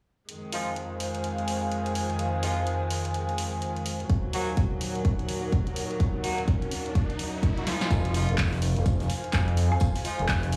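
Bass house with a swaggering, aggressive swing, opening on rich, earthy chamber strings holding pumping chords beside an airy, breathy pad, a punchy house drum kit and brilliant, tight horn stabs washed in dub echo, before a punchy electronic kick arrives at 4.1 seconds, a background riser builds, and at 7.9 seconds the strings drop out as a growling, overdriven FM bass under a filter sweep and a distant big-room acoustic kit enter alongside the continuing pad, house kit and horns, all heard in a large reverberant space.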